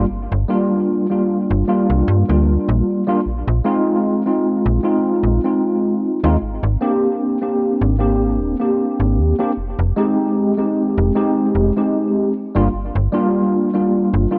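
A woozy, hazy vaporwave excerpt opens with a clean tine electric piano, heard as if through built-in speakers and coloured by analog chorus, 12-bit sampler grit and tape echo, laying lazily swung chords such as Gm7, Abmaj9#11 and Fm9 over a snappy, metallic slap-like FM bass, both up front in a dry, gritty cassette recording with light reverb and a shift to a new section at 9.6 seconds.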